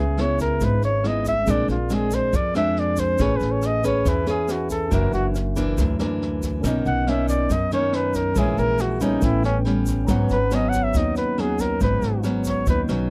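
A soft-edged, close-miked flugelhorn solos up front with light vibrato and scooped notes over a wistful, intimate bossa nova in G# minor at 139 BPM, backed by fingerpicked nylon-string guitar with finger squeak, woody, thumpy pizzicato upright bass, a barky, lightly overdriven tine electric piano in the background, a distant, roomy brush kit with a boomy kick and high-tuned snare, and a grainy, bright egg shaker, all in a dry room with little reverb.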